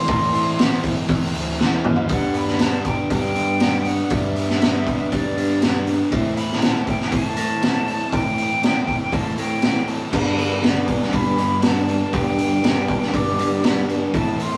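This rough rehearsal-room recording has tube saturation and a small, moderately reverberant room, cut from a longer piece in a dreamy, blissful shoegaze and dream pop vein. Up front sits a raw garage drum kit with a boomy kick, a high-tuned snare, a gritty, saturated edge and a rolled-off top, playing crash, hi-hat and toms and adding a fill from 1.6 to 2.1 seconds. A biting overdriven guitar plays a riff throughout, while a crunchy second guitar sits in the background, dropping out at 2.1 seconds and returning at 10.1 seconds. A bright, direct picked electric bass holds the low end under chords that move between Am and G. Floating above it all, a distant silver concert flute carries an expressive melody with a pure tone, vibrato and a crisp attack.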